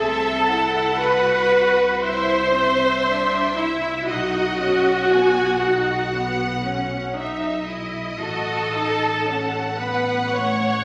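A rubato 4/4 pulse at a slow 58 BPM carries this serene, romantic classical movement for string orchestra, cut from a longer piece and moving from Am/C through Cadd9 to B and B7/A. Bowed violins sing the smooth, close melody with vibrato while a second, more distant violin line hovers in the background above it, the focused violas sit up front with rich accompaniment, lush and clear cellos and warm, even double basses anchor the bass. The whole ensemble blooms in a wet scoring-stage reverb, tinged with vinyl crackle and lossy compression artefacts.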